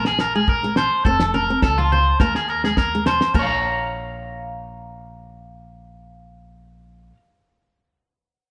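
Warm, danceable highlife guitar band music in a live room, where a bright, twangy electric guitar at the edge of break-up sits up front with spring-reverbed picked arpeggios that run to 7.2 seconds, over a woody pizzicato upright bass, a fingerpicked flamenco guitar accompaniment, a cloth-damped, thuddy drum kit with a fat snare, dark cymbals and a fill from 2.2 seconds, very quiet ringing agogo bells and soft-handed, thick-skinned congas in the background, with the flamenco guitar, drums, bells and congas all stopping by about 3.5 seconds.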